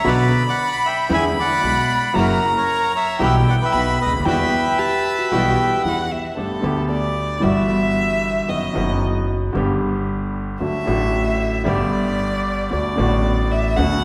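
In a rubato 4/4 at 114 BPM, this passionate, melancholic tango, cut from a longer piece, opens in E minor with a reedy, bright bandoneon carrying the melody up front over a clear, vintage concert grand piano with deep bass, a woody, thumpy pizzicato upright bass, and very quiet, lush bowed string-section stabs. A dark, clean hollow-body electric guitar adds a brief picked second line just before the music turns to G major at 6.4 s. There the warm violin, which has played a second line from the start, takes over the lead as an expressive solo, bowed with vibrato and portamento. Everything sits in a wet concert-hall reverb that gives the ensemble a spacious, churchlike glow.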